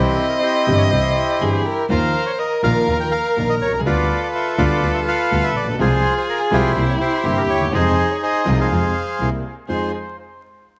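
Through light reverb, studio ambience and vinyl crackle, this tense, dramatic tango fragment in F minor unfolds with a rubato feel at 123 BPM: a reedy, close-miked bandoneon carries the melody up front with a touch of tape echo, a violin adds an expressive second line with vibrato and portamento, a concert grand piano gives warm accompaniment with deep bass, a dark double bass is bowed sul tasto with an airy, intimate tone, and a lush, very quiet string section adds stabs from 1.9 s.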